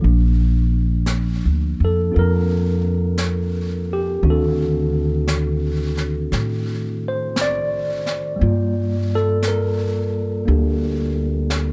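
A clean tine electric piano, a woody, up-front pizzicato upright bass and a softer brushed drum kit with a high-tuned snare and hi-hat in a small room open this intimate, tender jazz ballad together at a slow 58 BPM with a swung feel in Bb major, moving through Bb, D7b9 and Gm7 under light reverb across this 11.7-second cut from a longer piece.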